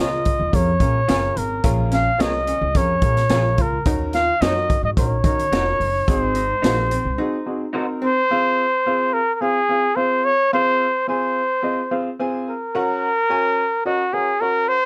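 A lightly reverberant, vintage-sounding slice of danceable, uplifting 1960s-style soul puts a mellow trumpet up front, singing a smooth, jazz-inflected solo melody with light vibrato and scooped notes over a worn, slightly detuned upright piano with long sustain. A punchy, natural-sounding drum kit and a woody, thumpy pizzicato upright bass on gut strings drive the groove, while in the background a dark, hollow-bodied archtop guitar plays a clean riff and a slightly broken-up, lo-fi electric guitar with ensemble chorus adds stabs. The drums drop out at 7.0 s and the bass, stabs and riff soon follow, leaving trumpet and piano alone from 8.3 s as the harmony moves from Fm to Gb.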